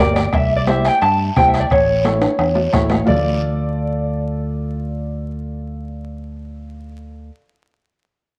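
Cumbia at 174 BPM in D minor, this fiery, passionate fragment of a longer piece sets a dark, slightly broken-up electric guitar melody with a cassette-tape tinge over a clear, woody, slightly detuned upright piano and a round, up-front fingered electric bass, while a soft-beater vintage bombo, bright high-tuned congas in the background, a raspy guiro and ringing metal-shell timbales play from 0.2 to 3.2 s with a drum fill at 2.2 s, moving through C and A to Dm under moderate spring reverb and the crackle of a home cassette recording.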